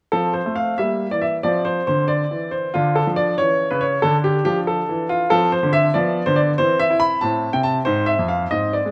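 Close, detailed microphones place a clear baby grand piano up front in a moderate recital hall, catching audible action noise and a long, natural sustain. This playful, graceful classical-period sonatina passage moves in 6/8 at 93 BPM, counted in dotted quarters, with rubato shaping the pulse as the solo piano plays from 0.1 to 8.9 seconds across a span from F2 to B5. Cut from a longer piece, the harmony moves from F through shadings of D minor, including Dm7/F and Dm6, before touching C/E and Am7 and closing on Fm/Ab.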